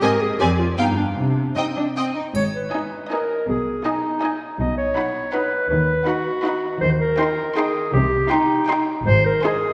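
A straight 3/4 lilt at 160 BPM carries this playful, whimsical cinematic cue in G# minor, where a lush, distant violin section sings the high melody over a second, clearer violin line, a mellow, up-front solo clarinet, smooth, even violas, and warm bowed cellos, with a rich double bass section and a brief touch of close triangle joining at 2.3 s, all bathed in a wet scoring-stage reverb for a magical, quirky feel.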